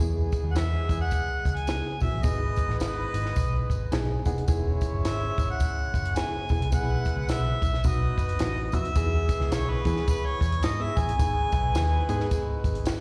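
A swung, uptempo 4/4 groove at 107 BPM in E major drives this uplifting 1960s-style soul excerpt, built on a compact, dry cocktail drum kit with a punchy kick and high-tuned snare, a dark, round, foam-muted picked bass up front, and a jingly tambourine in the background. A mellow, distant harmonica carries the melody with light vibrato and scooped notes over a barky, lightly overdriven reed electric piano with fast tremolo, which adds a fill at 3.6 seconds, while a smooth-topped horn section plays a punchy second line in octaves. An airy, bell-like glockenspiel joins at 8.7 seconds, and the performance sounds like a live gig heard through a venue's PA in recital-hall reverb, with slapback echo on the horns, electric piano, harmonica and glockenspiel.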